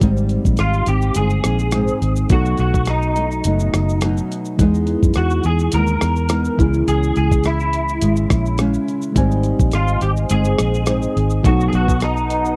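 A twangy, slightly broken-up electric guitar through a small old amp carries the melody from 0.6 seconds, its picked lo-fi tone coloured by ensemble chorus and tape echo, over a hazy, dreamy indie and bedroom pop groove at 105 BPM with a light swing. Up front, a gritty sampler-style kit with a thumpy kick, rim click, hi-hat and shaker sits beside a round, foam-muted fingered bass, while a dark fingerpicked nylon-string guitar drifts through lush chorus and a reedy, slightly out-of-tune electric piano murmurs very quietly beneath chords moving from Abmaj7 through B7, Emaj7 and Dbm. At 9.2 seconds a hollow, flute-like pad enters in the background, all of it captured in a dry, close 1970s-style studio sound.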